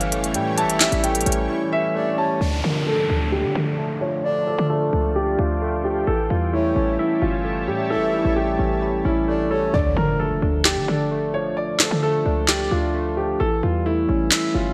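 A half-time trap groove at 131 BPM in D harmonic minor sets an eerie, menacing tone in this excerpt, with a crisp, up-front drum kit of sharp snare, handclaps and hi-hat that drops out after 1.4 seconds and returns at 10.7 seconds. A dark, mellow baby grand piano carries the melody over a barky, chorused tine electric piano and a punchy, tight 808-style bass, while a cloudy granular pad and a breathy, flute-like synth lead with vibrato and delay drift in from the opening moments until 9.7 seconds. A filtered sweep, a downlifter and an impact mark the section changes under a lush hall reverb and bright 1980s-style digital production.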